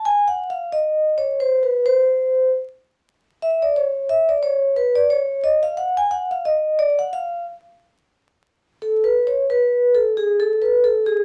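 A mellow, ringing vibraphone played with soft mallets carries this cool, nocturnal hip hop excerpt entirely alone from 0.0 to 11.2 s at a swung 89 BPM, its airy, up-front tone shimmering with slow motor vibrato inside a small room's moderate reverb, all framed by the crackle of vinyl.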